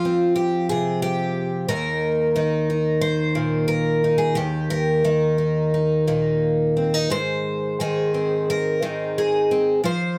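Warm and nostalgic, this brief folk excerpt features a solo picked twelve-string acoustic guitar in a loose rubato feel, its bright, shimmering, octave-doubled tone sitting up front in a close, dry, detailed recording where finger squeaks are audible as the harmony moves from Fsus2 to Eb at 1.7 seconds and on to Ab at 7.1 seconds.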